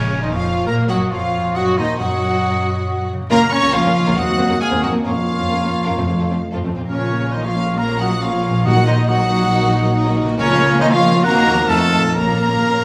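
Classical orchestral music in Bb minor at 136 BPM, urgent and stormy with a rubato feel, where a clear studio violin section carries the vibrato melody over second lines from a mellow solo oboe, an airy silver concert flute and a lush, background symphonic violin section. Beneath them, a very quiet viola section accompanies, a tight French horn section holds sustained chords, a concert harp rings out arpeggios, a distant trumpet adds stabs, and a dark, woody cello section joins a rich double bass section on the bass. Hard-mallet timpani strike briefly at the start, return at 5.1 s and play a fill from 12.1 s, while wet recital hall reverb surrounds the harmony's turn through Ebm, Cm7b5 and F7 back to Bbm.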